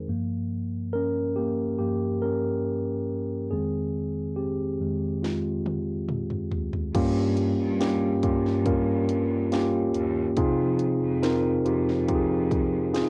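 Heartbroken and melancholic, this fragment cut from a longer 70 BPM pop ballad in straight 4/4 opens with a mellow, clean, up-front tine electric piano playing alone over Gm7b5 and Fm7 chords, until a punchy electronic house drum kit with a cracking snare and warm hats enters on a fill at 5.2 seconds, and a rich, smooth bowed cello section with vibrato carries the low bass line from 6.9 seconds, sounding distant beneath the cassette-tape grit of the piano and drums in a small, moderately reverberant home room.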